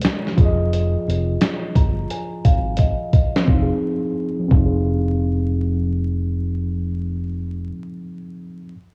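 A swung 87 BPM groove in 4/4 carries this melancholic, nostalgic lo-fi hip hop excerpt in F minor, set by a dusty, sampler-style drum kit with a thumpy kick, fat snare and hi-hat, compressed and gritty with 12-bit crunch and tape coloring, sitting up front until it drops out at 4.7 s after a short fill. A worn, slightly out-of-tune tine electric piano plays mellow accompaniment from the start, clean and direct but softened by cassette tape and a low-pass filter, while a filter sweep shapes the opening bars. From 0.4 s a deep, round dub bass, fingered and dark, holds the low register under an Fm7 chord. At 3.5 s a trumpet with a straight mute enters far in the background, a nasal, breathy jazz solo with light vibrato and a soft attack, hazy with filtering, tape and analog delay. The mix is dry, with vinyl crackle and the character of a home cassette recording.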